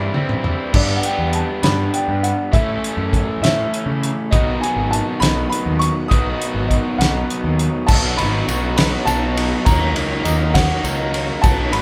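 Jangly and carefree, this indie rock excerpt in 6/8 opens with a drum fill from a cloth-damped, thuddy kit with a fat snare, as a dark, woody upright piano carries the melody over two crunchy overdriven guitar riffs, one tucked in the background, and a punchy fuzz bass sitting up front; a very quiet string-machine cello pad with phaser and ensemble chorus enters at 4.3 s, and a jingly tambourine joins in the background at 7.9 s, with the band playing live in one room under moderate large studio reverb.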